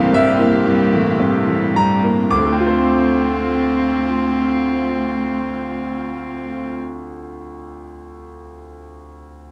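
A bright concert grand piano anchors this short, fragile neoclassical fragment, its brilliant tone reaching from deep bass up to high register with long sustain, sitting up front as it carries the accompaniment through to 9.5 seconds. At a slow 55 BPM in 4/4, the D minor music moves with a rubato feel, slowing down over the opening 2.3 seconds as the harmony passes from C7 to Dm7. A rich, pure cello played sul tasto by one bowed player floats at a distance as a second line, while a dark studio string section holds sustained chords with light vibrato and a soft, intimate attack. A round, tine-like synth pluck resembling a thumb piano adds gentle arpeggios in the background, treated with chorus and tape echo, before falling away at 2.2 seconds; the cello and strings stop at 6.8 seconds, leaving the piano alone. The mood is reflective, captured as a dry, close 1970s-style studio recording with light reverb, and the passage is cut from a longer piece.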